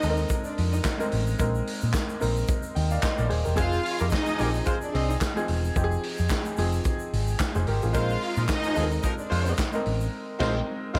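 This celebratory disco excerpt at 110 BPM opens with the full band, a punchy vintage drum kit sitting up front with its dark cymbals, handclaps and gated reverb. A round, dark hollow-body picked bass leads the mix, with a clear, worn grand piano and a lush, bowed violin section riding a lightly swung sixteenth-note feel over Bb9sus4 and Fm7. A smooth-topped horn section adds stabs from 3.6 seconds, and a grainy, distant tube shaker drops out at 10.1 seconds as the whole band hits a closing accent.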